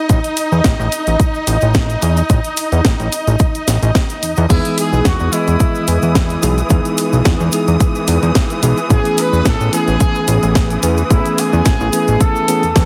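Sunny and feel-good, this nu-disco excerpt moves at 109 BPM with a light swing, as lush bowed strings pump against a punchy, tape-warm electronic kick, a house kit with a cracking snare, hi-hat and crash, and a fat, detuned analog bass with a plucky filter sitting up front. A cabasa rattles quietly in the background, and at 4.5 seconds a bell-like electric piano joins along with a clear, distant trumpet section whose melody trails off in dub echo. The sound is heavily compressed and radio-ready, set in light digital ambience, with the harmony moving from A5 to Emaj7 and then Amaj9.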